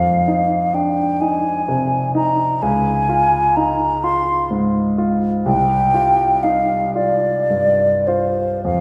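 Classical impressionist duo in 6/8, mysterious and wistful, moving at a slow 34-43 BPM in dotted quarters with a free, rubato feel, cut from a longer piece. A silver concert flute carries the melody between C5 and C6 with an airy, hollow, mellow tone, tongued notes and vibrato, while a clear, present grand piano accompanies from the low bass up to F4 through Fm7, Db and a closing Csus4. Both instruments sit close to the ear, yet a wet concert hall reverb with a 1.8 s decay places the listener further back in the room.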